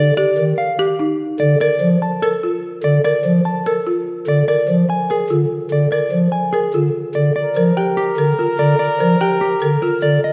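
A clean, dark-toned electric guitar carries the melody up front in this bright, propulsive piece of minimalist classical pattern music, cut from a longer work. It moves in 7/8 at a brisk 292 eighth-note beats per minute with a straight feel, in Bb major. Beneath it, a pipe organ on soft, hollow stopped-flute stops holds a low accompaniment with a touch of chiff and baroque voicing. A woody folk marimba, struck with medium mallets on hardwood bars, spins rustic arpeggios in the middle register. The harmony opens unaccompanied by chords, settles on Bbmaj7 at 1.6 seconds, and shifts to Gm7 at 7.4 seconds, where a smooth soprano saxophone with light vibrato enters on a second line. The ensemble sits in a wet recital hall with a reverb time of 1.9 seconds.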